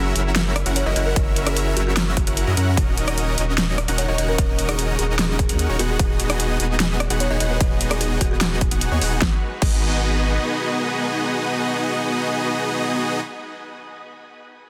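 A dense, heavily limited mix with light reverb carries this emotional, lush future bass drop at 149 BPM in a half-time feel in G# minor, where a huge, detuned supersaw riff with sidechain pumping and tape echo and a deep, saturated sub bass sit up front over a very quiet bowed string section, a punchy overdriven electronic kick arrives at 1.2 seconds to join an overdriven big-room dance kit with a massive snare, and a woody kalimba melody with digital delay rings in the background until 8.6 seconds, before the sub bass falls away at 10.4 seconds.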